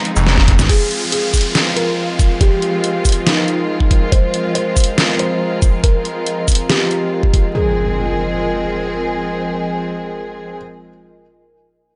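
A knocking, layered electronic kick sits up front and drives this menacing excerpt of heavy wobble dubstep, set at 140 BPM in a half-time 4/4 feel in F minor. It works alongside a produced dubstep kit whose deep snare, hi-hat and shaker were re-recorded in a large room, and a short drum fill ends at 0.7 seconds. Early on, a snarling, detuned saw bass growls briefly on a low F through distortion and overdrive, followed by a quick, saturated wobble bass with chorus. Beneath these, a soft felt-muted upright piano carries the melody with delay, its intimate tone revealing audible action noise. A smooth, distant symphonic string section holds sustained chords over an F minor harmony, pumping with sidechain alongside a warbling, nostalgic lo-fi pad thickened by chorus and reverb. Electronic downlifters and impacts mark the transitions, the drums stop at 7.4 seconds, and the piano, strings and pad carry on to the close of this fragment, all in light digital ambience.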